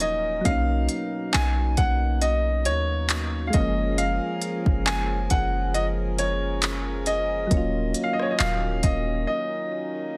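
Contemporary R&B at a slow 68 BPM with a light sixteenth-note swing and a longing, sensual mood, this brief cut from a longer piece sets a clear, up-front baby grand piano melody with digital delay over round, detuned electric-piano-like synth keys with chorus and a reedy, breathing pedal harmonium whose sustained chords pump with sidechain, while a deep, boomy 808-style bass and a soft, tape-warm R&B drum kit of kick, hi-hat, rim click and handclaps carry the Bmaj9, Gbmaj9 and Ebm9 changes until the drums drop out at 9.1 seconds and the bass at 9.3 seconds, leaving piano, keys and harmonium for a short break that runs to 10.2 seconds.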